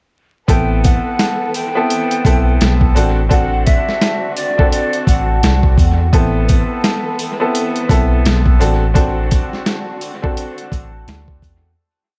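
Boom-bap hip-hop at 85 BPM with a 16th-note swing, dark and tough, built as a short hook that runs from 0.5 seconds and fades out from 9.0 seconds over an echo-heavy small-room mix with vinyl crackle. A gritty, pitched-down sampler kit sits up front with a thumpy kick and backbeat snare, while a mellow tine electric piano carries a deep looped bass line. Above them, a woody, slightly detuned upright piano plays chopped chords, a breathy jazz flute loops a short melody that stops at 5.6 seconds, and a background string pad with portamento sounds alongside jingly sleigh bells on eighths, all over Amadd9 and D7/A.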